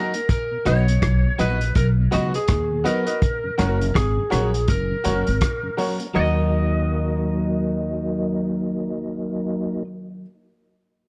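Roots reggae with a hypnotic, serious mood, cut from a longer piece and set in a small room with a swung sixteenth-note feel. A bright, twangy lead guitar, lightly driven and compressed, carries the melody. A picked electric guitar at the edge of break-up sits in the background, a dark, round tonewheel organ with chorus vibrato and a slow rotary speaker fills out the chords, and a clear, woody upright piano adds stabs. The vintage kit is acoustic, lo-fi and muffled, with a tight kick, hi-hat and rim click up front and a rolled-off top, and it drops out at 6.1 seconds. A thumpy pizzicato upright bass with steel strings enters at 0.7 seconds and sits up front. The harmony moves from B to Gb before landing on Ebm as a new section begins at 6.1 seconds.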